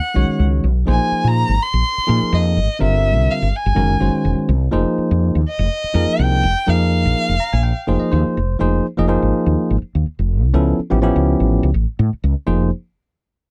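A smooth, vibrato-rich bowed violin opens this driving, funky electric jazz fusion passage at 124 BPM with a light sixteenth-note swing, joined at once by bright, bell-like tine electric piano chords and a round, punchy fretless bass with subtle chorus, with the piano slipping in a fill at 7.2 seconds before the violin drops out at 8.1 seconds, in a dry, close 1970s-style studio sound.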